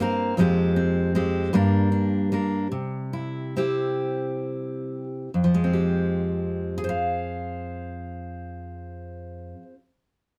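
Intimate and wistful, this short folk fragment in F minor and 6/8 at about 42-53 BPM features a solo fingerpicked steel-string dreadnought acoustic guitar, full-bodied and up front, ranging from F2 to F5 and moving through Fmadd9, Gm and C while slowing down between 0.4 and 5.3 seconds before returning to Fmadd9 at 5.3 seconds, all captured by close, detailed microphones in a dry setting.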